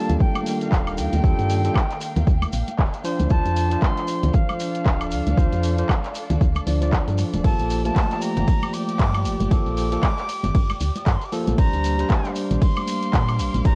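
Moody, deep house at 116 BPM in G minor, swung on the sixteenths, this excerpt drifts through Ebmaj9#11, Dm7, Gm9 and Bb69 as an airy, reedy jazz flute carries the melody over barky, overdriven electric piano stabs and a bed of intimate, sul tasto chamber strings. Underneath, a round, woody FM bass and a punchy, up-front electronic kick anchor the groove, with the bass, piano and strings all pumping to the sidechain, while a gritty drum kit with dark hats, handclaps, ride and woodblock joins ringing, high-tuned congas and a grainy shekere tucked in the background. Studio reverb and a cassette-tape sheen give the whole mix a dusky, worn character.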